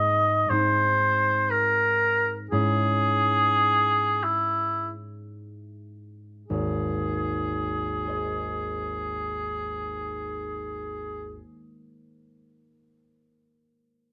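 Set in a light reverb, this tender, lyrical romantic classical excerpt in Ab major and 3/4 moves with rubato at 36-61 BPM, slowing through its opening 6.5 seconds as a mellow, roomy oboe with light vibrato sings the melody over a thumb-plucked, ringing concert harp that shifts from Ab to Dbm/Ab and back, before the oboe stops at 11.4 seconds and the harp rings on alone until 12.6 seconds.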